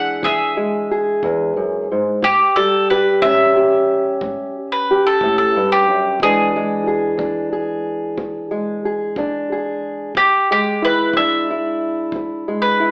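A bowl-back mandolin takes the melody up front with a warm, double-stringed picked tone, soloing across the whole 12.9-second clip of this soulful, rollicking acoustic country blues in E mixolydian, moving from E7 to A7 at 2.2 seconds and back to E7 at 6.2 seconds. Beneath it, a fingerpicked old ladder-braced acoustic guitar supplies dark, woody, boxy accompaniment on old strings, while a tight, brushed kick drum sits in the background from 0.2 seconds. The slow 12/8 pulse at 61 BPM has the feel of a band playing live in one room, bathed in a wet large studio reverb and filtered through an AM radio sound, cut from a longer piece.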